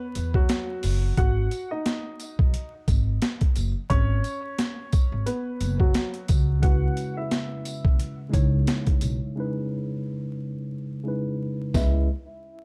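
A warm upright piano opens this dark, gritty boom-bap hip-hop excerpt alone, its woody tone filtered and softened by plate reverb and tape echo as it voices a rootless C#m7 in C# minor. At 0.2 seconds the drums, upright bass and tambourine come in at a relaxed 88 BPM in 4/4 with a light swing on the 16ths. The sampler-style kit sits up front, compressed, pitched down and overdriven, with a thumpy kick and a high-tuned snare that carry the sound of a large room. The pizzicato upright bass is equally forward and woody, while a jingly tambourine stays in the background. At 6.6 seconds, shortly after the harmony moves to C#m9, a worn, slightly out-of-tune tine electric piano joins with clean, direct chords, all inside a dark, warm production dusted with vinyl crackle and a filter sweep.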